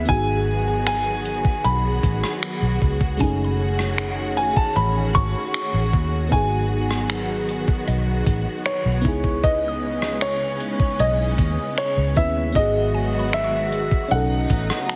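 A clear, intimate grand piano opens this late-night contemporary R&B excerpt, carrying the melody with audible action noise and a trail of tape echo. Alongside it from the start sit a lush, dreamy FM electric piano with a soft pad layer, shimmering through chorus and phaser, a smooth, bowed studio string section holding sustained chords with vibrato, and a dark, round, foam-muted fingered electric bass placed up front. At 0.1 seconds a crisp 8-bit drum machine joins with finger snaps, hi-hat, rim click and a thumpy, overdriven kick that sounds re-recorded in a large room. From 3.2 seconds a woody, mellow synth pluck adds a mallet-like texture in the background, colored by chorus, phaser and tape echo. The tempo is a slow, straight 77 BPM in 4/4, tuned to A4 = 439 Hz, and the chords, moving from G#m7 through F#m69 and C#m9 to a closing B9, give the longing mood its ache. Light reverb and heavy, radio-like compression frame the whole mix.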